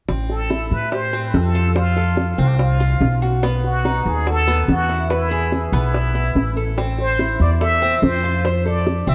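A moderate plate reverb and a vantage from further back in the room frame this 9-second cut from a longer Cuban son and guajira piece, nostalgic yet danceable, in A minor at 144 BPM in a straight 4/4. Up front, a woody, gut-strung pizzicato upright bass thumps out a dark line beneath a bright, metallic Cuban tres picking arpeggios on its double strings. Soft-handed, low-tuned bongos sit round and close in the background. From 0.3 s a plunger-muted trumpet takes the solo melody in a jazz style, brilliant and forceful with wah-wah inflections and light vibrato, over a progression that moves from Am7 through F, B7 and E.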